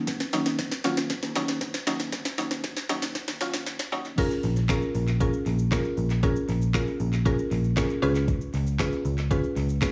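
Bittersweet yet confident, this dance-pop excerpt opens with a build-up, a drum fill and a filter sweep before the drop lands at 4.2 seconds, moving from Ebm7 to Bbm7 and then Db7. A woody, bright, mallet-like synth pluck with chorus and a dark, foam-muted picked electric bass both pump against the sidechain, while a smooth R&B drum kit adds a knocking kick, sharp snare, metallic hats, handclaps, shaker and crash through tape echo. The echo-heavy mix sits in light studio reverb with a high-pass filter.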